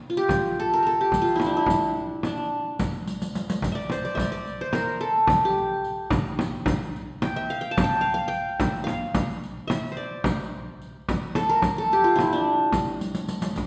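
A straight 9/8 pulse at 217 eighth-note beats per minute drives this soulful, melancholic Turkish makam ensemble excerpt in D makam ussak, cut from a longer piece. The bright-edged, plectrum-plucked qanun carries the melody up front between D4 and A5, with its triple strings ringing over a deep, large frame drum heard close and dry and a close riq with dark jingles. Drum fills mark 3.1 and 13.0 seconds, and the whole performance sits in a reverberant recital hall, heard from further back in the room.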